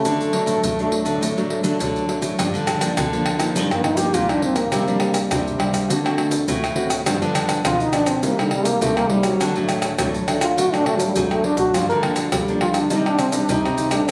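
Captured on a phone in a club-like room with moderate reverb, this lively, bittersweet samba-choro excerpt in G minor moves at a straight 103 BPM in 4/4. A bright, fresh-stringed nylon guitar fingerpicks a deep classical accompaniment while a second, warm nylon guitar fingerpicks a classical bass line. Close, dry maracas, tight surdo, pandeiro and tamborim sit up front, with a drum fill at 11.3 seconds. A warm, jazz-styled trombone carries the melody with vibrato and scooped notes, treated with plate reverb and tape echo, and takes a solo from 2.4 seconds over chords that move from Gm7 through Ebadd9/G, D7 and Cm7.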